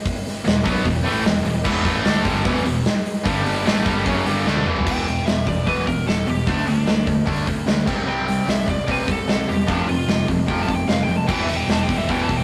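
Opening with a big, punchy acoustic rock kit up front, this menacing, driving hard rock excerpt in E phrygian at 150 BPM quickly adds a wall of picked riffing from a cranked stack guitar with spring reverb, a tight distorted guitar and a scooped, double-tracked high-gain guitar over a fuzzy overdriven bass, and after a drum fill a biting overdriven lead guitar takes a solo from 4.9 s over a rough, tube-saturated rehearsal-room sound in a stone room.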